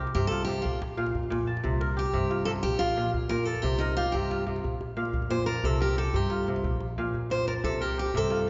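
Reflective and hypnotic, this short cut from a longer West African traditional piece moves at 120 BPM in a straight 12/8, with ringing, crisp kora arpeggios and a bright, full-bodied picked steel-string acoustic guitar solo up front over woody pizzicato upright bass and a tight, cracking djembe set back in the mix that adds a fill at 7.0 seconds, as the chords alternate between C5 and Bb5 in a wet concert-hall reverb.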